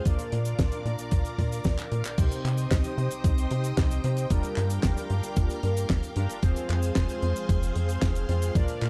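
Nostalgic and melodramatic, this italo disco excerpt moves in a straight 4/4 with a dark production and light studio reverb. A lush string machine ensemble holds sustained chords high above, with a slow attack and ensemble chorus, while analog synth brass fires bold, fat stabs coloured with chorus and delay. Up front, a tight, punchy sequencer bass drives the low end with a plucked, ring-modulated sawtooth tone. A thumpy, sampler-style electronic kick sits loudest in the mix, joined by a dry, damped 70s kit whose fat snare, dark cymbals, handclaps, hi-hat and cabasa add texture. A drum fill at 1.8 seconds leads into a new section at 2.2 seconds, where the harmony turns from Bb through Cm, Gm7 and Fm.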